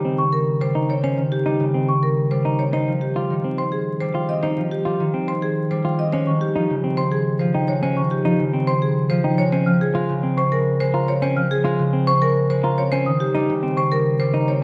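A ringing, fingerpicked concert harp accompaniment and a clean, compressed electric guitar playing arpeggios open this urgent, hypnotic excerpt of minimalist classical pattern music at 106 BPM in 3/4, joined almost at once by delicate, bell-like celesta arpeggios high above and a bright, percussive marimba melody up front, moving through Eb7, Dbmaj9 and Bbm7 harmonies inside a dark production with vinyl crackle and a wet scoring-stage reverb.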